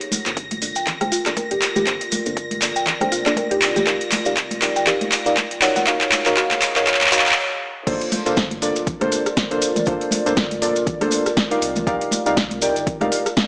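Late-night and deep, this deep house cut builds with filter-swept, nasal chord stabs pumping against the sidechain, a woody, chorused mallet-like synth pluck arpeggio, shimmering string-machine violins, a warbling lo-fi tape-like pad, soft-handed congas, grainy maracas, a sine sub bass with octave sitting in the background and a layered electronic kick, while an overdriven drum kit with punchy snare, metallic hats, handclaps, rim clicks and crash plays a fill through the build until a brief stop at 7.4 seconds gives way to the drop at 7.9 seconds, set in a gritty, dry hardware sound with a small-speaker tint and a lush hall reverb.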